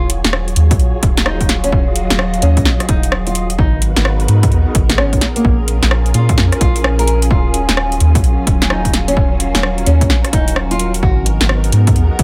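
UK garage in a two-step style at 129 BPM in Eb minor, this moody, soulful passage swings over chords moving from Ebm11 through Abm7 and Bbm7, with a dark, fingerpicked nylon-string guitar melody carrying a dub echo until 11.2 seconds. Beneath it, a deep, round dub sub bass sits up front, a silky string machine holds mellow sustained chords with ensemble chorus and sidechain pumping, and a warbling, nostalgic tape-like pad adds lo-fi detuned texture with chorus and built-in reverb. The overdriven garage kit brings a woody snare, rim clicks and metallic hats, joined at 0.7 seconds by a punchy, tape-warm electronic kick, all in a dry mix.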